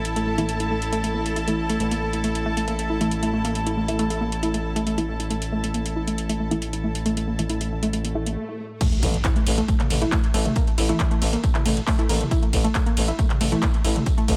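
A light reverb sits over this dark, hypnotic excerpt of driving peak-time techno at 137 BPM, where a growling, thick FM bass, a techno kit with metallic hats, and reedy chamber strings with light vibrato all pump against the sidechain, joined by a very quiet, moody ambient pad, beneath a warbling, lo-fi pluck riff and crisp, detuned wavetable chord stabs in the background. The pad and strings stop at 8.4 seconds, as a background swell and impact carry into the drop. At 8.8 seconds a punchy, up-front electronic kick arrives with a very quiet acoustic kit of snare, hi-hat and tambourine with a rolled-off top.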